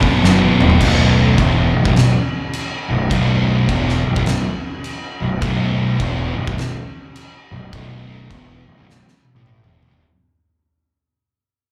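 A swung 4/4 groove at 104 BPM drives this heavy, ominous stoner and doom metal excerpt in B minor, moving from Bm to Bsus4. An oversized, low-tuned drum kit sits up front with a boomy kick, fat snare, dark cymbals and gritty saturation, with fills at 0.2 and 8.9 seconds. A growly, overdriven fuzz bass also sits up front, beneath two thick fuzz guitar riffs in the background, one carrying a slapback echo. A very quiet, bright, double-tracked cranked stack guitar plays its own riff, and a dark fuzz lead guitar plays a brief melody only until 0.6 seconds. It all sounds like a live club gig heard through the venue's PA, fading out over its length.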